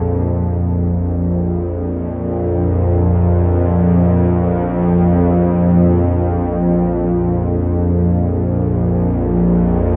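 Unsettling and cavernous, this ambient fragment from a longer piece drifts in free time, built on a single bowed-like drone that plays alone for the full 10 seconds. The string-like sawtooth tone is tense and bright, thickened by detuned unison voices and a noise layer, with a slow attack, long release and vibrato, holding a Bb5 chord low in the register between Bb1 and F2. Sitting up front, the drone carries its own built-in reverb and a diffuse ambient delay, all inside a huge, wet space whose reverb tail lasts 7.8 seconds.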